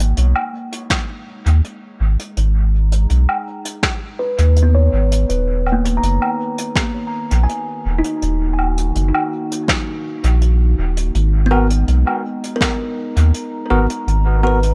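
A straight 82 BPM groove in 4/4, carried by a brushed jazz kit of hi-hat, high-tuned snare and woodblock under dub echo, drives this spacious, meditative ambient dub piece in G# minor, where a round, up-front sub bass anchors woody, ringing kalimba arpeggios moving through a filter sweep and analog delay, a warbling, nostalgic tape-like pad fades in with sustained chords in the background, an overdriven electronic kick runs from 0.9 to 12.8 seconds, and bell-like tine electric piano stabs with dub echo arrive at 11.5 seconds, in a small, echo-heavy room as the harmony moves from G#m9 to D#m7 and back.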